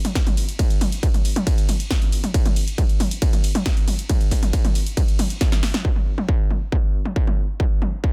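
An industrial, relentless techno excerpt opens at 0.0 seconds with a punchy analog drum machine: hi-hat, ride cymbal, snare and toms, its tape-warm tone carrying the faint character of a small room. A distorted, layered electronic kick drum joins at 0.2 seconds and sits up front, louder than the drum machine and driving the straight 4/4 pulse at 137 BPM. The opening stretch plays as a drop, and a drum fill at 5.4 seconds leads into a new section. The sound is dry and dense, with a heavily limited modern master that keeps the pressure high. Cut from a longer piece, this fragment of pure percussion feels built for a pounding dancefloor.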